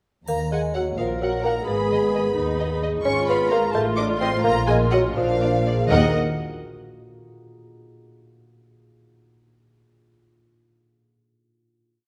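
In a straight 6/8 at 80-88 BPM, this whimsical film cue in Eb minor has a quirky, sneaky air: a smooth violin section with vibrato carries the tune and after-beat chords, doubled an octave away by a lush, distant violin section and a dry, rustic folk marimba in the background. A mellow, roomy bassoon adds its own line alongside a viola counter-melody, while a ringing concert harp spreads thumb-plucked broken chords, a dark cello section sets bass on the beats with a close, woody double bass section doubling it, and triangle strokes stop at 1.2 seconds. The harmony passes from Ebm through Abm, a diminished chord and Bb7 before landing on a final Ebm chord at 5.9 seconds, in a wet scoring-stage reverb.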